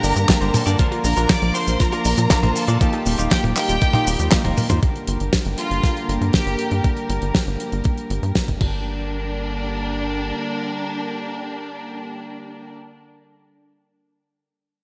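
A danceable, nostalgic Italo disco cut in G minor at 119 BPM opens with a lush, distant violin section singing the melody through digital delay over reedy sustained string chords, a punchy sawtooth sequencer bass, a very quiet detuned analog pluck playing arpeggios, and twangy clean electric guitar stabs, while a dry, fat-snared 70s kit with cabasa, handclaps, hi-hat, toms and crash is joined at 0.3 seconds by a thumpy, sampler-style electronic kick. After a drum fill at 4.6 seconds the pluck and guitar drop out, and the drums stop at 8.7 seconds, leaving the bass and strings until 10.3 seconds and then the strings alone. The bright 1980s-style digital production carries light reverb, and the progression moves from Gm through Bb to Ebadd9 before returning to Gm.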